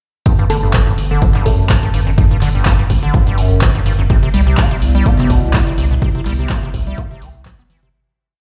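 Playful and raw, this short acid house piece runs at 125 BPM in G major with a light swing on the 16ths, its groove starting at 0.3 seconds over a four-on-the-floor electronic kick that sits up front and a punchy, tape-warm analog drum machine supplying closed and open hi-hats and handclaps. A squelchy, resonant square-wave acid line with accents and slides carries the riff through overdrive, chorus, cassette tape and tape echo, while a round, deep off-beat bass pumps beneath it and a tine-like FM pluck offers short, mellow phrases until 2.1 seconds. The harmony moves from Gsus2 to Cmaj9, a moody, detuned sawtooth pad enters at 4.7 seconds with sidechain pumping, and the piece fades out from 5.4 seconds in a big, bare room with large studio reverb.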